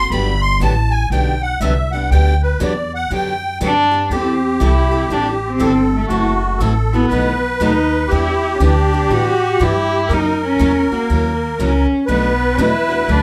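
A reedy, shimmering musette accordion opens this playful, lively gypsy-jazz swing excerpt in G major at 120 BPM, taking a solo until 4.1 seconds over a woody, thumpy pizzicato upright bass on gut strings, a bright, boxy parlour guitar and a full-bodied dreadnought guitar sitting in the background, while a dark, bowed cello enters at 3.6 seconds to carry the melody with vibrato and the accordion continues as a second line, the band sharing one small, reverberant room.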